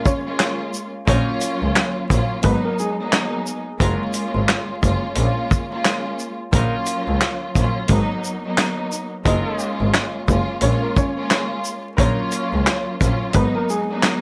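A warm soul drum kit sits up front in this gritty, moody boom-bap hip-hop cut, its punchy kick, medium-tuned snare, handclaps, hi-hat and shaker sounding dry and mid-forward with a rolled-off top, swinging at 88 BPM in 4/4. A lush studio string section plays throughout, bowed with vibrato and portamento for an expressive backdrop in Eb minor over chords that cycle through Bbm7, Ebm7/Bb, Abm7 and Gbmaj7. A dark, woody upright piano carries the melody, sounding worn, boxy and slightly detuned with short sustain and tape echo, heard at the start and again from 9.3 seconds. From 1.1 seconds a bowed double bass adds a rich, reedy gut-string tone from a distance, while a tight, vintage horn section places clear, punchy stabs with light vibrato and tape echo in the background. Light reverb and vinyl crackle give this fragment of a longer piece its gritty character.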